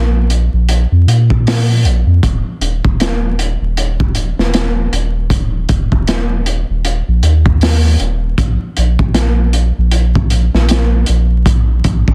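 A deep, round dub sub bass with a soft, sustained tone sits up front from the start, joined at 0.3 seconds by a crunchy, saturated breakbeat kit of gritty kick, snare and hi-hat with a rolled-off top, driving this dark, brooding trip hop excerpt with a swung 4/4 feel, a dry, dense master and a layer of vinyl crackle.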